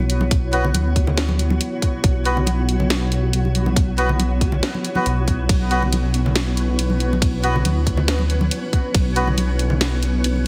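Brooding and heavy, this deep dubstep fragment moves at 139 BPM in a half-time 4/4 feel with a light swing on the sixteenths, set in B minor and cut from a longer piece. A dark, detuned saw bass sits up front with a deep, rumbling, beating tone, while a tight, layered electronic kick drum pushes forward from 0.3 s until 9.0 s. A garage drum kit adds hi-hat, ride cymbal and a cracking snare in small room ambience, and congas sit in the background with dub echo. A cloudy, evolving granular pad holds sustained chords on a B5 harmony, blurred and mellow in its own reverb, as a flickering, grainy texture hovers quietly beneath it. Reedy, breathy melodica stabs with dub echo appear from 0.5 s, and the whole mix carries a light reverb and a heavily compressed, radio-like sound.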